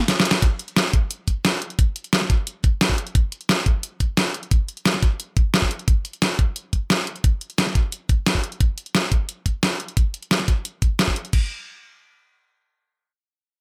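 Dry, up-front and produced, this drum and bass excerpt runs at 176 BPM in a straight 4/4 with a mechanical, futuristic mood. A dubstep drum kit, overdriven and re-recorded in a small room, brings a deep snare along with crash, hi-hat and ride cymbals, opening with a brief fill before a layered, knocking electronic kick drum joins at 0.4 seconds. Both parts play until 11.4 seconds, while at 11.3 seconds the recording moves into a short second section.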